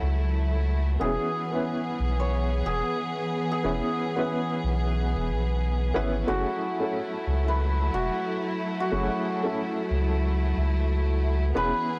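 Trip hop at 91 BPM in F# minor, this brooding, melancholic excerpt rolls along in 4/4 with a 16th-note swing of 60%, cut from a longer piece. A bright, shimmering santur carries the melody throughout, its hammered notes ringing through a tape echo. Beneath it, a worn, woody upright piano with a slightly detuned character plays accompaniment through a tremolo effect, while a bowed studio string section holds rich, biting sustained chords with vibrato and a smooth top. A deep, round dub sub bass sits up front, soft yet sustained, and drops out at 11.7 seconds. The harmony moves from F#m7 to C#m7/E and back to F#m7 at 6.3 seconds, all set in a small room with a dry, gritty hardware sound.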